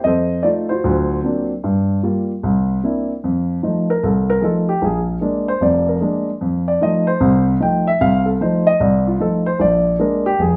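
A dark, mellow grand piano opens this swinging solo jazz excerpt up front with a natural, short-sustained tone, spanning F1 to G5 over F7, D7alt, Gm7 and C9 changes before launching its solo at 3.2 s over F7 and Bb7, all set in a moderate large-studio reverb with a live-room feel and softened highs.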